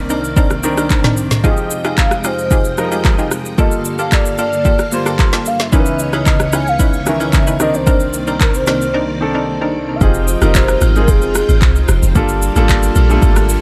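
Dry and intimate in sound, this hypnotic, late-night amapiano excerpt moves at 112 BPM in F dorian with a straight 4/4 feel. An up-front, electronic afro-pop drum kit with a deep kick and woody snare drives the groove with handclaps, rim clicks, shaker and toms, while agogo bells and woodblock sit in the background. A clear baby grand piano carries the accompaniment over shimmering, vintage string-machine violins, whose sustained chords pump under sidechain and an ensemble chorus. A hollow, bouncy square pluck adds bright stabs through chorus and delay. From 1.5 seconds, a velvety, mellow synth lead sings the melody, gliding with portamento through chorus, phaser and delay. After a short break, the drop at 10.0 seconds brings in an up-front log drum bass, round and dark with a percussive attack, as the chords move through Fm9 and Gm9.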